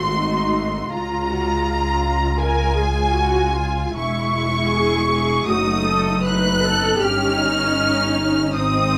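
Close, detailed microphones in a moderate recital hall capture a veiled, muted string orchestra playing a slow, solemn and yearning romantic movement in Db major, cut from a longer piece. At 79 BPM in 4/4 with a rubato feel, the muted violins carry a warm, vibrato-laden melody up front, while a darker second violin line sits in the background above rich con sordino violas. Smooth-topped cellos and a lush, bowed double bass section, also up front, anchor the harmony as it moves from Ab7b9 through Db toward D#7/G.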